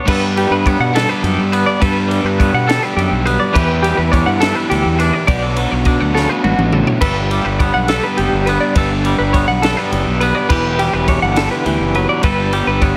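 A twangy, bright electric guitar and a clean semi-hollow electric guitar open this bright, intricate excerpt of math rock and midwest emo, both carrying tremolo. The twangy guitar plays compressed accompaniment while the hollow-body guitar picks arpeggios in a higher register. An instant later, a dark, double-tracked overdriven guitar riff, a growly fuzz bass set up front, and a compact cocktail drum kit with a punchy kick, high-tuned snare and dark cymbals join in. The piece moves in 6/8 at 69 BPM in dotted quarters, in G major tuned to A4 = 437 Hz, with a straight feel. The harmony shifts from Gmaj9 through Em7 and Bm7, returns to Gmaj9, then moves to Em9 and Gadd9, with a drum fill from 6.2 to 7.0 seconds. A light reverb gives the mix a small sense of space.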